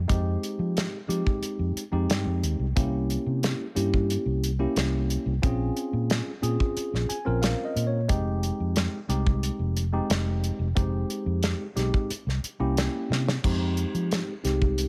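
Straight-eighth soul blues in F minor at 90 BPM, this smoky, soulful passage from a longer piece moves through Fm9, C7b9 and Bbm9 chords in a small room. A round, amped fingered electric bass and a clean tine electric piano with phaser sit up front beside an acoustic soul drum kit with a tight kick, medium-tuned snare, dark cymbals and a rolled-off top. The electric piano plays a fill at 6.8 seconds, and a drum fill at 13.1 seconds leads into a brief closing section at 13.4 seconds.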